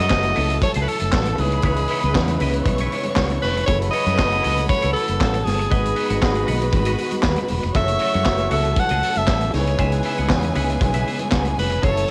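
A small-room home recording with cassette-tape colour on most parts frames this 12-second disco excerpt, sultry and driving at 118 BPM in a straight 4/4 in F# dorian. A bright alto saxophone carries the melody up front, with light vibrato and scooped notes, while a lush bowed string section plays a close, expressive second line. Underneath, a dark, mellow grand piano and a clean, picked semi-hollow guitar sit in the background as accompaniment. A second, very quiet string section holds sustained chords low in the range, and a distant, roomy horn section adds punchy stabs doubled in octaves. A round, dark fingered bass and an up-front vintage kit with tight kick, medium-tuned snare, hi-hat and handclaps drive the groove, joined by very quiet, ringing congas heard from afar. The harmony moves between F#m7, C#m7 and G#m7.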